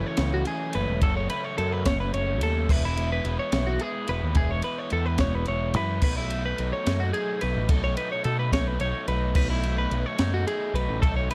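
A dry recording opens this wistful, intricate clip of math rock and midwest emo in 6/8 at 72 BPM, moving from E to B7(no3) at 6.0 seconds. A twangy twelve-string electric guitar sits in the background spinning bright, compressed arpeggios, while a second clean, up-front twelve-string plays only until 1.0 seconds. A double-tracked, overdriven garage guitar carries the riff through spring reverb, a growling picked bass with overdrive pushes forward, and a compact cocktail kit, dark and smooth with a high-tuned snare, punchy kick, ride and crash, joins at 0.2 seconds.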